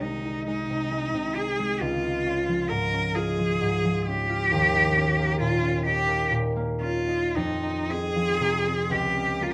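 A single bowed cello sings a rich, focused melody with vibrato over the mellow, ringing harp's fingerpicked accompaniment, both up front from the start in a tender, warm romantic duo in Ab major. The pace is slow and rubato in 6/8, around 36-46 BPM counted in dotted quarters, as the harmony moves from Ab/C through Db, Eb7 and Fm7 to Bbm/Db. Close, detailed miking catches the players inside a moderate large-studio reverb, and the passage is cut from a longer piece at 9.5 seconds.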